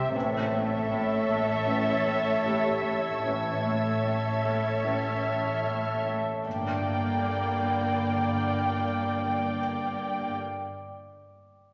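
Muted, veiled violins carry the melody over a close second violin line and a high violin texture at the start of this mysterious, tense suspense film-score cue in G dorian at 76 BPM, joined by glassy, ethereal glass harmonica chords, rich background violas, dark cellos and double basses on the bass, mellow French horn chords, a bright, ringing Celtic harp riff and a faint, intimate felt-muted upright piano with audible action noise, the harp and piano dropping out at 6.5 s as the harmony moves from A to G minor, in a reverberant recital hall.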